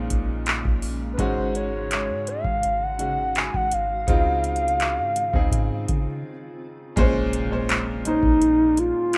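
A hollow, woody clarinet-like synth lead with chorus and vibrato carries the melody up front in this moody, late-night contemporary R&B excerpt, moving at 83 BPM in Bb minor over Bbm9, Ab7sus4 and Dbmaj9 chords. An intimate baby grand piano with audible action noise, a round, dark 808-style bass and a booming, overdriven analog drum machine with a deep kick, metallic hats and handclaps fill out the groove, while a blurred granular cloud pad drifts in the background until 6.9 s. After a short break, a very quiet electronic impact arrives at 7.0 s, giving the rough home-demo mix a closing accent.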